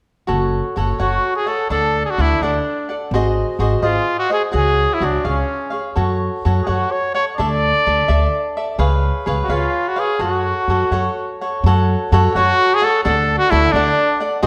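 This is a passionate, dramatic mariachi piece in the Mexican folk tradition, set in 6/8 with a straight feel and cut from a longer performance. A crisp, picked acoustic cavaquinho and a woody pizzicato upright bass with steel strings both begin at 0.3 s, laying down the harmony and low foundation together. At 1.0 s a clear trumpet enters as the solo voice, carrying the melody in a classical style and sitting prominently up front. The harmony moves through minor and dominant colours, including G#7 and a C#sus4 that settles onto C#, and the main theme begins again at 11.6 s. All three parts are close and present, while a moderate recital hall reverb gives the ensemble a spacious glow.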